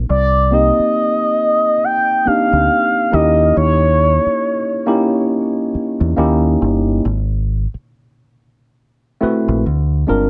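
A moderate studio reverb frames this smooth, sensual neo-soul R&B excerpt at a swung 69 BPM, where a worn, slightly out-of-tune tine electric piano bathed in lush chorus and a dark, round, punchy fingered dub bass carry the Cm9 to Bb13 progression throughout, while an expressive sawtooth-and-triangle synth lead with vibrato, chorus and tape echo sings its sustained melody up front from 0.1 to 5.3 seconds.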